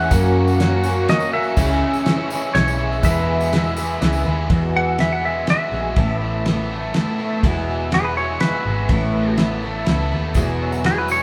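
The clean lap steel guitar carries the melody with a twangy, compressed slide tone and takes a solo from 4.5 seconds to the end of this short cut from a longer piece. Underneath, a shimmering, octave-doubled twelve-string acoustic guitar picks the accompaniment while a crunchy, double-tracked overdriven guitar plays a riff, and a round, punchy hollow-body short-scale bass sits up front. A cloth-damped drum kit gives a thuddy, dry pulse with a fat snare, tight kick and dark cymbals, while a tonewheel organ holds sustained chords in the background through chorus vibrato and a slow rotary speaker. A clear grand piano and a jingly tambourine appear only at the start and again from 10.3 seconds. This is nostalgic folk rock with a heartland rock feel at 123 BPM in 3/4, set in E major, with the harmony settling into alternating Eadd9 and Asus2 chords once the solo begins. The band sounds as if it is playing live together in one large studio, bathed in a wet reverb.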